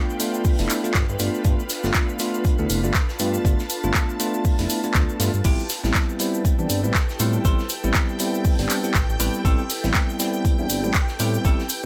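Hypnotic and deep, this deep house excerpt moves at 120 BPM in 4/4 with a swung sixteenth-note feel in A minor, cut from a longer piece and resting on a G7 chord before shifting to Am7 at 5.4 seconds. An up-front, tape-warm electronic kick anchors the groove, joined by an overdriven analog drum machine supplying crash, handclaps and hi-hat, a very quiet acoustic studio kit adding hi-hat and a medium-tuned snare, and a grainy egg shaker sitting close and dry in the background. A smooth, mellow synth bass with vibrato and tube saturation pumps against the kick, while a bell-like tine electric piano plays clean, direct stabs roughened by vintage 12-bit sampler grit, with delay and sidechain pumping. Two pads fill the space: a very quiet, breathy pad holding sustained chords, and an ethereal, detuned texture bathed in ensemble chorus and its own reverb, breathing with the sidechain. At 5.4 seconds a dark, picked hollow-body jazz guitar enters with a melody, alongside a shimmering string machine of violins holding a high G in the background. 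The mix is dry overall, with little reverb.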